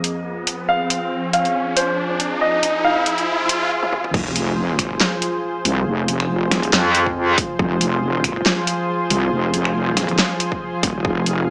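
Chaotic and heavy, this excerpt of half-time wobble dubstep in F minor at 139 BPM builds from a dark concert grand piano melody with tape echo, a lush, warbling unison pad pumping with sidechain, a riser and a dubstep kit of huge snare and bright hats, through a brief break and drum fill, into a drop at 4.1 seconds where a saturated, detuned wobble bass and a punchy electronic kick come in, joined briefly by an aggressive, metallic wobble bass, all in a lush hall reverb with a small-speaker tint.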